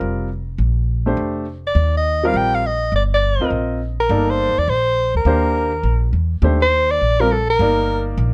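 A breathy soprano saxophone carries the melody in this short modal jazz excerpt, entering at 1.7 seconds with a mellow, smooth-topped tone, vibrato and scooped notes in a soloing jazz style. The mood is spiritual and open, moving at a brisk 206 BPM in 4/4 with a swung eighth-note feel. Beneath it, a warm baby grand piano with short sustain provides accompaniment over harmonies that shift from Bbmaj9 to Ebmaj9, settling on Ebmaj7 as the music turns to a new section at 6.4 seconds. A pizzicato upright bass with steel strings anchors the low end, its sound woody, dark and thumpy. Close, detailed microphones and little reverb keep all three players up front and intimate.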